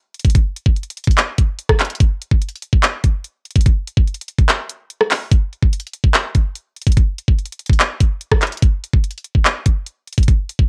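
Hip hop in a brooding, hard-hitting mood, this short excerpt from a longer piece moves at 145 BPM in 4/4 with a half-time feel. A trap drum kit carries the whole passage from 0.1 seconds onward, built from kick drum, handclaps, hi-hat and rim click. Its electronic, produced sound puts a knocking kick and bright hats up front in the mix. A break arrives at 4.5 seconds and lasts until 5.3 seconds before the groove carries on through the single section. Light reverb surrounds the kit, which was captured as a home recording on cassette.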